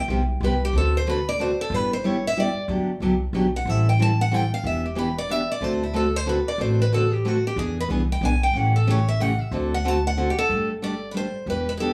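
Acoustic string swing in the jazz manouche style, this playful, swinging excerpt from a longer piece moves at a brisk 184 BPM in 3/4, with a swung eighth-note feel in G major. A bright parlour-sized steel-string guitar, picked with fresh-sounding strings, carries the melody and takes a solo across the opening passages from 0.0 to 10.5 seconds. Beneath it, a full-bodied jumbo steel-string guitar picks the accompaniment through chords such as Cmaj7, D7, Am7 and E7, landing on Gsus2 as a new section begins at 10.5 seconds. An upright bass, plucked and woody with a thumpy attack, anchors the low end. All three instruments sit up front, captured as a band playing live together in a small room with a wet studio ambience.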